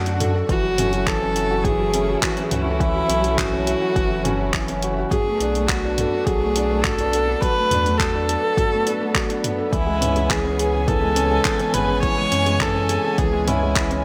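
A single viola, up front and intimate with an airy bow and light vibrato, carries a melancholic, moving melody over this piano-and-strings electronica in F# minor at 104 BPM, entering at 0.5 seconds after a brief electronic swell opens the track. Beneath it, a felt-muted upright piano repeats a soft riff with audible action noise, while a lush studio string section holds sustained chords in the background and a round sine sub bass anchors the low end, both pumping with sidechain. An overdriven electronic kick and a deep house kit of handclaps, hi-hat and toms drive the chords from F#m7 through Bm7 to Amaj7, all set in light reverb in what is cut from a longer piece.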